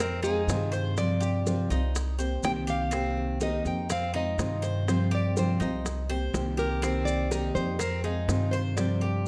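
Latin Cuban son and guajira with a danceable, warm feel, in a short cut from a longer piece that circles Fm7, G7sus4 and Cm7. A fingerpicked classical nylon-string guitar with fresh strings carries the melody through a slapback echo, while a second, full-bodied nylon-string guitar plays the accompaniment up front beside a woody, thumpy pizzicato upright bass on gut strings, and a picked Cuban tres adds metallic double-string arpeggios. Tight, high-tuned bongos played with soft hands sit in the background alongside grainy maracas, and close, detailed microphones capture the group in a moderate recital hall reverb.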